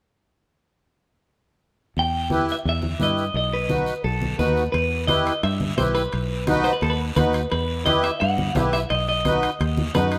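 A bright, twangy clean electric guitar carries the melody up front, its picked notes bathed in spring reverb, in this passionate, driving cumbia, cut from a longer piece and moving at 173 BPM in 4/4 with a straight feel in E harmonic minor. It enters at 2.0 seconds alongside a punchy, foam-muted fingered electric bass that sits low and direct, and a raspy, saturated guiro. Moments later, a reedy, sweet accordion with light tremolo tuning fills in the accompaniment, joined by thick-skinned, low-tuned congas with a small-room sound. At 4.7 seconds a second section begins, and ringing metal-shell timbales join in the background. The harmony alternates between E minor and B7 or B, and the mix is set in a light reverb.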